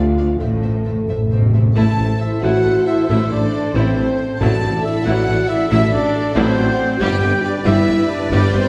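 A roomy scoring-stage reverb sets this heroic adventure cue slightly back in the hall, an adventurous, determined excerpt in A dorian moving at 91 BPM in a straight 6/8, its harmony shifting from Am to G at 7.0 seconds. Soft-attack, sul tasto chamber violins carry the melody over a lush symphonic violin second line, smooth viola accompaniment, dark sustained French horn chords, a ringing, fingerpicked harp playing arpeggios, and bowed cello and double bass anchoring the bass. Round, soft-mallet timpani add a close, dry fill from 0.4 seconds, and at 1.8 seconds a mellow, hollow flute section and a solo oboe join on a second line while a very quiet, distant tuba deepens the bass.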